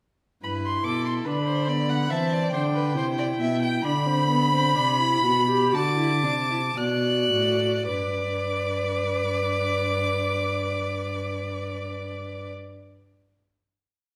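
A rich first violin leads this short, elegant and lively baroque-style fugue for string quartet in G major, singing high with expressive vibrato and portamento. A smooth, distant second violin and a warm viola join a dark, woody cello that sits up front, each carrying its own imitative line at a straight 4/4 pulse between 52 and 73 BPM, slowing from 0.4 to 10.2 seconds. The exposition moves through G, C, G/D and D7 before settling on a final G chord at 7.9 seconds, all bathed in the reverb of a recital hall.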